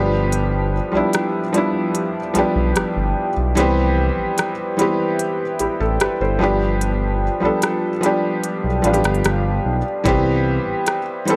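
Romantic and tender, this contemporary R&B excerpt moves in a straight 4/4 over a slow alternation of G7 and Cmaj7. A felt-muted upright piano carries the accompaniment up front, soft and intimate, its thin felt letting audible action noise come through. Beneath it, a smooth synth bass built from sawtooth and square waves, with a fast attack, holds sustained low notes until it stops at 10.7 seconds. An electronic R&B kit enters at 0.3 seconds with a knocking kick, crisp hi-hats and rim clicks. Behind them, a deep, dark ambient pad of detuned unison voices and a sub octave, treated with chorus and its own reverb, takes on a warbling, vintage cast. The overall sound is dry and gritty with little room around it, and the passage plays as a break until 10.1 seconds.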